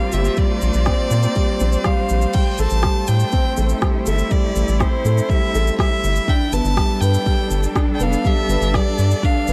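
A round, dark analog bass sits up front in this hypnotic, melancholic piano and strings electronica excerpt, its square and sine tones shaped by a filter pluck with a fast attack and sidechain pumping. A produced deep house kit of crash cymbal, rim click and shaker comes in at 0.1 seconds, joined at 0.4 seconds by an electronic kick drum, deep and layered, together holding a straight 4/4 at 122 BPM in A minor. A felt-muted upright piano plays a soft, intimate riff with short sustain, while a close string quartet, one player per line, bows sustained chords with vibrato, portamento and a gentle attack. Above them a clear solo violin carries the melody, smooth and even, trailed by tape echo. The harmony moves from Bb69 to Am7 at 2.3 seconds and on to G at 6.3 seconds, within a small room ambience.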